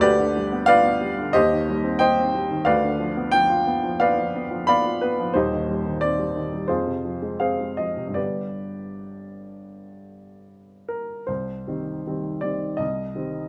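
A classical romantic character piece for solo piano, this brief excerpt from a longer work unfolds in C minor with a brooding, passionate mood. The upright piano plays alone throughout its 13.5 seconds, its tone woody and polished, sitting present and up front with light reverb around it. The tempo moves flexibly between 75 and 93 BPM in 4/4, with a rubato feel that lets the phrasing breathe. The harmony opens on G7 over D and passes through C minor, B diminished and F minor before settling on G, while the piano spans a range from deep Eb1 to B5. At 11.3 seconds a new section begins as the music resolves onto C minor.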